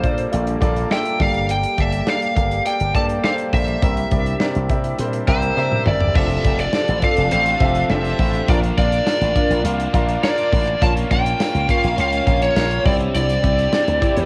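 A nostalgic, glossy 1980s-style pop piece in F major at 103 BPM opens with an overdriven lead guitar singing the melody up front over an intimate concert grand piano, a punchy envelope-filtered slap bass, an acoustic drum kit with bright cymbals and tambourine, and an airy, detuned pad in the background. After a drum fill from 5.6 seconds, a scooped high-gain guitar and dark, round synth brass stabs join at about 6.2 seconds as the chords move from F6 through Bb and Bbm to Cadd9. Everything sits in a light small-room ambience, with a cassette-tape haze over every part but the bass.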